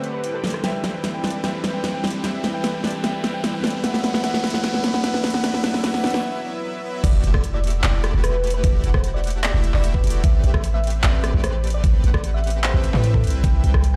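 Bathed in light reverb with the ambience of a big sound system in a bare room, this bittersweet, emotional future bass excerpt at 150 BPM in half-time E minor builds on a tine-like, warbling FM thumb-piano-like synth pluck melody with sidechain pumping and digital delay, glassy digital keys, an airy breathy pad and a smooth, detuned soft supersaw riff, all driven by an overdriven dubstep drum kit with a huge snare and bright hats. A riser swells in the background, and an impact then marks the drop at 7.0 s, which brings in a deep, boomy 808-style bass and a knocking electronic kick drum.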